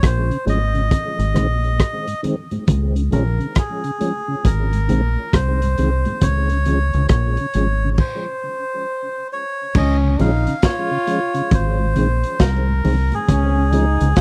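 Warm and uplifting, this roots reggae excerpt moves at a relaxed 68 BPM in Db major, with a reedy, breathy melodica carrying the melody through tape echo over a deep, round fingered electric bass and a gritty, saturated breakbeat kit with a punchy kick and dark cymbals. A mellow tonewheel organ with chorus vibrato and very quiet, bright congas fill in the accompaniment, and the whole sound is dry and close in a 1970s studio style. After a stop at 8.0 s, a clear, punchy trombone with light vibrato and echo joins as a second line at 9.8 s.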